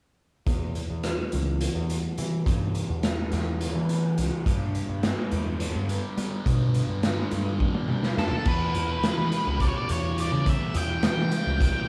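The recording sounds dry and close, with a plain studio ambience and little reverb. This is a dark, mysterious slice of psychedelic rock in E dorian, driving at 210 BPM in an odd 7/8 metre with a straight feel. A double-tracked fuzz guitar carries the riff through a phaser and low-pass filter. A filter sweep colours its part across the opening section, while the chords move from Em to G. Beneath it, an overdriven picked electric bass sits direct and amped. A raw garage drum kit stays up front with a punchy kick, a medium-tuned snare, rim clicks, toms, hi-hat and crash, its saturated, gritty tone rolled off at the top in a bright stone room. A drum fill at 7.6 seconds leads into the return to Em, and just before that return an octave-fuzz lead guitar with tape echo enters up front at 8.2 seconds for the closing stretch of this cut from a longer piece.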